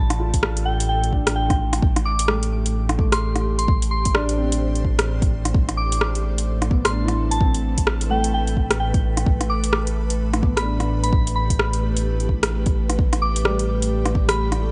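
Light reverb and digital ambience capped at 10.3 kHz frame this nocturnal, rainy future garage excerpt in A minor at 129 BPM with a swung 16th-note feel, where a pure, warbling FM synth bell carries the melody through chorus and tape echo over a felt-muted upright piano with audible action noise and delay, an ethereal detuned pad with phaser and 12-bit sampler grit, a round dub sub bass held on A1, sidechain pumping on the pad, piano and bass, an up-front deep house kit of metallic hats and rim clicks, and a deep, tape-warm electronic kick, all moving between G/A and Am7.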